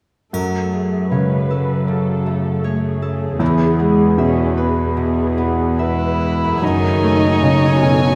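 A dark, intimate solo cello carries the melody from 5.8 s in this sorrowful, moving cinematic film score in F# dorian, played rubato at 70-79 BPM over a clear concert grand piano with audible action noise, a woody viola section, bright ringing harp arpeggios, a floating cello section bass line and a brief triangle at the start, with a pure violin section second line and a sul tasto double bass section joining at 6.6 s, all in a moderate scoring-stage reverb.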